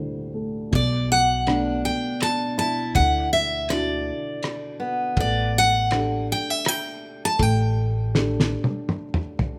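Nostalgic and heartfelt, this short acoustic folk-pop ballad in 3/4 sets a bright, full-bodied picked steel-string guitar melody up front over a dark, mellow upright piano with audible action noise and long sustain. An upright bass with a woody pizzicato tone and a cloth-damped, thuddy drum kit, muffled and gritty with a fat snare, enter at 0.7 seconds. A second picked guitar adds warm arpeggios from 1.5 to 5.5 seconds, and a drum fill closes the passage from 8.1 seconds under light reverb.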